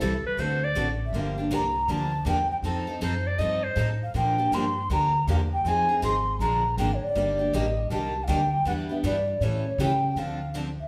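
Acoustic string swing in D minor at 159 BPM, this virtuosic, bittersweet excerpt opens with a breathy clarinet second line that drops out at 3.9 seconds as an airy clay alto ocarina takes the melody from 1.1 seconds with vibrato over two bright picked steel-string acoustic guitars and a woody, thumpy pizzicato upright bass on gut strings, all played live in one room with a wet large-studio reverb through chords moving from D7 and Gm7 to Ebmaj7#11 and a closing Dm7.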